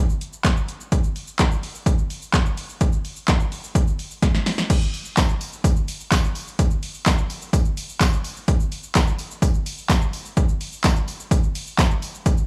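A punchy, tape-warm analog drum machine sits up front in this summery, euphoric pop excerpt, its kick and snare hitting hard alongside handclaps, hi-hat, shaker and crash, with a short room on the snare, clap and hats, a drum fill at 4.2 seconds leading into a new section where a jingly, bright tambourine joins in the background from 4.9 seconds, all in a dry, gritty hardware recording.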